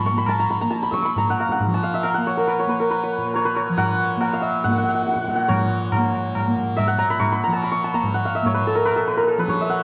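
Hindustani classical music in raga todi, longing and meditative, gradually speeding up as a bright, ringing santur carries the melody up front through analog delay over a softly plucked, buzzing tanpura drone and distant, high-tuned tabla that also passes through analog delay, all in a small room with an echo-heavy mix flecked with vinyl crackle.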